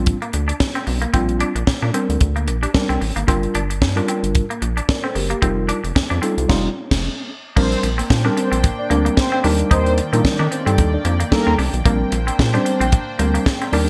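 Bright 1980s-style digital production with a moderate plate reverb frames this smooth, danceable early-eighties boogie funk excerpt, where a tight, dry drum kit with a high-tuned snare and gated reverb sits up front beside a rubbery, bouncy square-wave bass. A worn, slightly out-of-tune tine electric piano supplies mellow chords over a Bb69, Gm7 and F9sus4 progression, while a clean, twangy electric guitar picks a riff, and the band hits an accent from 6.5 to 7.6 seconds. At 7.6 seconds a round, brassy synth brass line and a shimmering, detuned pulse-width pad in the background join for the second section as the chords move to Ebmaj7 and back.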